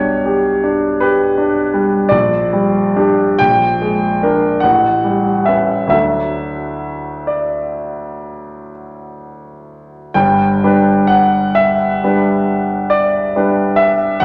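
A solo concert grand piano opens on a G/B chord in a tender, dreamy romantic nocturne, unfolding in a slow, rubato 9/8 at roughly 40-55 BPM counted in dotted quarters. Its harmony drifts through Gm/Bb, Bb7 and A13 before settling on D at 5.9 s, establishing a D major home. At 10.2 s a new section begins and the music turns toward G major, resting on a G chord until the fragment ends at 14.2 s. The piano spans F#1 to G5, with a warm, deep bass and a natural, up-front tone that sounds close. A wet recital hall reverb lends the instrument a soft halo, and the tuning sits slightly bright at A4 = 444 Hz.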